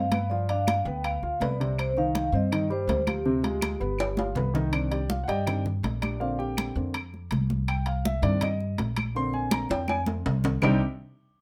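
Sultry and fiery, this Afro-Cuban jazz passage in C minor, cut from a longer piece, moves at 163 BPM in a straight 4/4. A mellow, soft-mallet vibraphone with medium motor vibrato carries the melody until 4.3 seconds, over a dark, thumpy pizzicato upright bass up front and a deep-voiced concert grand with short sustain that takes a solo from 4.7 seconds. Bright, hard-hand congas and ringing metal-shell timbales sit close and dry, woody claves tick in the background, fills close each section, and a moderate club reverb adds a club ambience.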